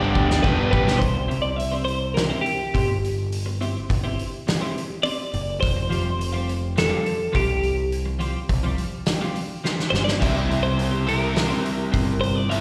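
In straight 4/4, a loose indie drum kit rolls through an opening fill before the groove drops into half time at 1.0 seconds, carrying this brooding, angsty stretch of quiet-loud alternative rock. The kit sounds distant and roomy with dark cymbals, a tight kick and a rolled-off top, while a growling picked electric bass sits up front, overdriven and round, holding the low end throughout. A crunchy overdriven guitar and a raw garage guitar, the latter set back in the mix with slapback echo, slam out a riff together over the opening G7 before falling away. A twelve-string electric guitar carries the melody the whole way, bright and twangy, shimmering with vibrato, plate reverb, slapback echo and digital delay, while a second, quieter twelve-string weaves compressed arpeggios through analog chorus across the C and Fsus2 harmony. After another drum fill, the crunchy guitar crashes back in at 10.2 seconds on a C7, and the whole performance carries the light reverb of a live gig heard through the venue's PA, with the reverb of a recital hall.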